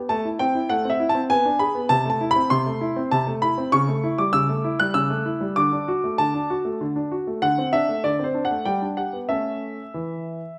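A clear, natural baby grand piano sits up front in a moderate recital hall reverb as it plays an elegant, graceful classical-period sonatina excerpt in 3/4 at 97 BPM, moving from A minor harmonies into D major from 3.7 seconds and spanning C3 to F#6 across its roughly 10.6 seconds.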